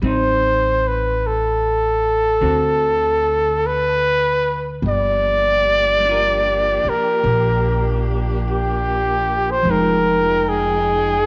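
A slow swung 4/4 carries this tender, romantic jazz ballad fragment, where a breathy, whispered trumpet sings the melody up front with vibrato over clean, picked hollow-body electric guitar accompaniment and a woody pizzicato upright bass, joined at 4.8 s by a mellow saxophone section holding sustained chords, all set in a wet echo-chamber reverb.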